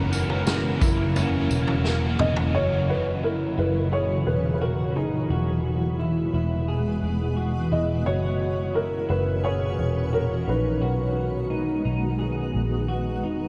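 A dreamy, blissful dream pop excerpt at 87 BPM in F# mixolydian opens with a punchy vintage drum kit of kick, snare, tambourine and toms, a biting overdriven guitar that drops away at 3.1 seconds, and a drum fill at 1.9 seconds before the drums stop at 2.5 seconds. From the very start, a soft, felt-muted upright piano with audible action noise carries the melody through subtle chorus and tape echo until 11.8 seconds, over a bright, evolving granular cloud pad, dark fingered arpeggios on clean electric guitar bathed in lush chorus, and a round, foam-muted picked bass sitting up front. Chords move from F#7 to E, back to F#7 and on to B6, and the whole mix is soaked in a huge ambient reverb.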